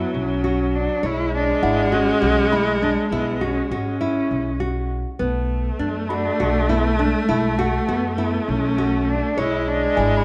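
Restless and pensive, this contemporary chamber piece moves at 201 eighth-note beats per minute in an uneven 7/8 metre with a straight feel, set in B dorian. A dark, bowed cello carries the melody with vibrato, while a single bowed viola, rich and smooth, plays a second line up front. Alongside them, a full-bodied nylon-string guitar fingerpicks arpeggios, and a pizzicato upright bass with steel strings gives a growly, woody foundation. A small celesta adds a delicate, bell-like sparkle from the background, its hard felt hammers lending a sweet edge. The harmony sways between Bm7 and C#m, and the close, detailed miking with light reverb keeps every part distinct across this 10.2-second passage cut from a longer work.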